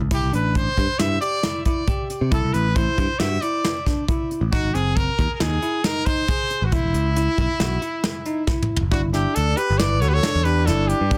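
Progressive instrumental band music in a driving, intricate 5/4 at 136 BPM, where a growly, punchy picked electric bass and a soft brush drum kit with a punchy kick and softly clipped snare push under a brilliant, forceful trumpet melody touched with delay and light vibrato, while a bell-like tine electric piano spins arpeggios and, after a drum fill, a breathy, raspy alto saxophone adds a second line from 8.9 seconds in this dense, heavily limited modern mix with light reverb.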